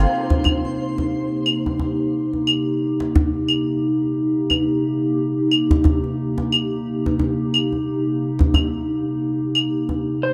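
A warbling, detuned tape-like pad carries this short excerpt of organic downtempo, holding dark, nostalgic sustained chords on C minor seventh with a slow attack, long release, a sub octave and chorus that give it a lo-fi, vintage haze. At 89 BPM in 4/4 with a loose 16th-note swing, the mood is mystical and earthy. A ringing, silvery guzheng, played with fingerpicks and treated with delay, arpeggiates over the opening until 2.5 seconds. Underneath, a deep, acoustic djembe sits up front beside electronic, tape-toned claves re-recorded in a small room. At 10.2 seconds a clean, compressed electric lap steel guitar slides in on a single high note with volume swells and delay, just as the excerpt closes. A lush hall reverb and a dark production bathe the whole recording.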